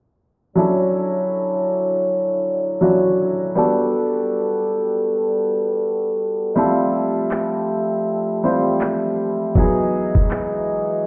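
This contemporary R&B passage, cut from a longer piece, moves at a slow 80 BPM in 4/4 with a gentle swing on the sixteenths, and its mood is tender and smooth. A clear, slightly worn grand piano plays the accompaniment up front from 0.6 s, alongside a warm French horn section holding sustained chords in a classical ensemble style. The harmony sits in D major and moves through Dmaj9, Gmaj9, Fmaj9 and Emaj9. At 7.3 s an electronic, produced drum kit arrives with handclaps and a knocking kick, sitting a little louder than the piano and horns until 10.5 s. The recording sounds as though it is played through a big sound system in a bare stone room, with a moderate small-room reverb, a low-pass filter and a filter sweep running the full length.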